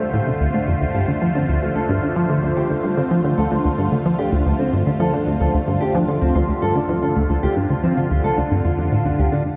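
Mysterious and hypnotic, this excerpt of ambient, sequencer-driven space music moves at 111 BPM in D minor on a Dm7 chord, where a swirling, detuned analog pad with phaser and chorus holds sustained chords up front, a punchy, wave-folded analog bass drives a plucky riff through lush chorus and tape echo, and a dark, clean fingered electric guitar fades in with tape-echoed arpeggios, all set in a vast cathedral reverb.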